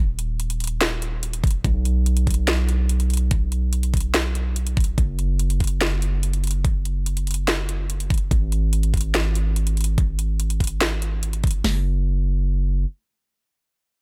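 Euphoric and playful, this future bass excerpt at 144 BPM rides a half-time feel in 4/4, opening on a drop that runs to 11.6 seconds before giving way to a short closing section. A deep, mellow sine 808-style bass sits up front from the start with a fast attack and sidechain pumping, while two electronic trap kits join in: one with a sharp snare and metallic hats from 0.2 seconds, and an overdriven one with a knocking kick and crisp hats from 1.4 seconds. The mix is dry and close, with the overdriven kit carrying the character of a small room.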